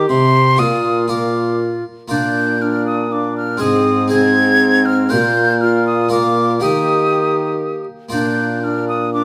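Set in a wet stone room, this brief excerpt of a festive, stately renaissance-style consort dance in 3/4 at 120 BPM in Bb mixolydian carries an airy, mellow silver concert flute melody with vibrato up front, a tongued tenor recorder second line with woody chiff, a dry, brilliant harpsichord accompaniment plucked on octave strings in the french style, and a clear, distant trombone bass.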